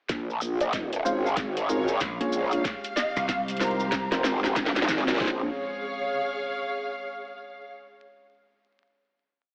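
A growling, up-front bass with chorus and tube saturation drives this playful, funky glitch hop piece, joined by a knocking electronic kick, a dubstep kit with a huge snare and metallic hats, grainy maracas, a woody bowed string section pumping under the beat, a punchy plucky unison lead with delay and a filter sweep, worn tine electric piano stabs, a bright slap bass from 2.0 to 4.1 seconds and a very quiet warbly pad, all building through a drum fill before the strings hold a final Bbm7 chord from 5.2 seconds in a lush hall with vinyl crackle and an AM radio tone.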